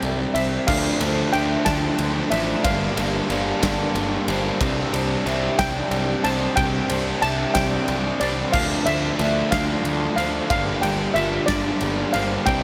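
Post-rock in a slow 6/8 at 61 BPM, this brooding, cinematic excerpt moves through Csus2, Dm7 and Gm7 chords across its 12.6 seconds. A mellow, shimmering steel pan carries the melody, played with soft rubber sticks and treated with slapback echo and digital delay. Beneath it, a vibraphone struck with hard mallets rings out arpeggios in the background, its fast motor vibrato and boxy small-room tone carrying the same slapback echo and digital delay. Two overdriven electric guitars play riffs in the background: one warm with spring reverb, the other brighter with slapback echo, entering at 0.7 seconds. A fuzz-drenched picked electric bass anchors the low end, while a huge arena drum kit with a punchy kick, medium-tuned snare, bright crash and ride cymbals, and a pumping room sound drives the groove. A bowed studio string section holds sustained chords at a barely audible level, and the whole mix sits in a lush hall reverb that gives it a big arena scale.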